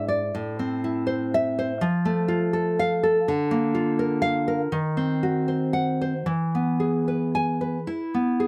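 The recording has a light reverb around a single nylon-string guitar that sits up front, its tone full-bodied and deeply classical. This is a romantic piece for solo classical guitar in A minor, melancholic and wistful, moving in 4/4 at roughly 73-86 BPM with a free, rubato feel. The fingerpicked guitar spans G#2 to G#5 across the whole 8.5-second passage, which is cut from a longer piece. Its harmony moves from Am through F and Bb/D to a D#m6 at 4.7 seconds. The phrase then arrives on E at 6.3 seconds.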